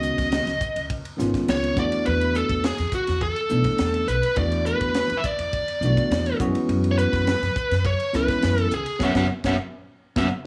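A bluesy, overdriven lead guitar carries the melody from the first moment of this driving, intense electric jazz fusion excerpt, set in F# minor at 104 BPM in a straight 4/4. Picked and up front, the distorted guitar sits in a range from F#4 to F#5, with slapback echo and plate reverb adding depth to its tone. Beneath it, a bell-like, bright tine electric piano plays clean accompaniment with its own plate reverb, while a woody pizzicato upright bass with steel strings anchors the low end. A crisp, polished fusion drum kit with a high-tuned snare and punchy kick rounds out the band on hi-hat, ride, snare and kick in an airy studio room. The harmony moves through suspended ninth chords, C#9sus4, E9sus4 and finally F#9sus4 at 6.4 seconds, before the band hits an accent starting at 9.0 seconds and the electric piano slips in a short fill at 10.2 seconds.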